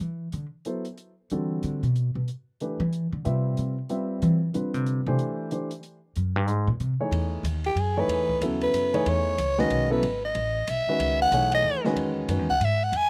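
An upright bass opens this cool, spiritual modal jazz excerpt with a pizzicato solo, its steel strings giving a woody, up-front tone over a dark, smooth drum kit with a boomy kick and rolled-off top. The tune swings along in 3/4 at a brisk 186 BPM, starting in E phrygian over Em9 and Dm9 harmonies before a G#7 chord leads into C# minor at 7.1 seconds. An upright piano slips in at 0.7 seconds as accompaniment, its mellow sound carrying a slapback echo. At 7.7 seconds a growling soprano saxophone takes the melody and the solo, close-miked and raspy, with vibrato, subtone and scooped notes over a C#m11 chord. The sound is dry and close, with the saxophone loudest and the drums sitting furthest back.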